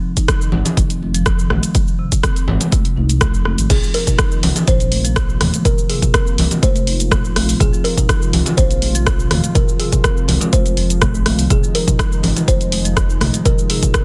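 A dry, dense and heavily limited master carries this hypnotic, driving afro house piece at 123 BPM in F minor, resting on a single Fm7 chord. A punchy electronic kick sits up front beside a layered deep house kit of cabasa, crash, hi-hat, rim click and toms with a softly clipped snare. Ringing, high-tuned congas played with hard hands and a deep, rumbling, sidechain-pumped detuned saw bass arrive at 0.5 s beneath mellow soft-mallet marimba arpeggios that echo through a digital delay in the background. At 3.7 s a woody, airy thumb-plucked kalimba melody with its own delay enters alongside a smooth, chorused analog pad set back in the mix.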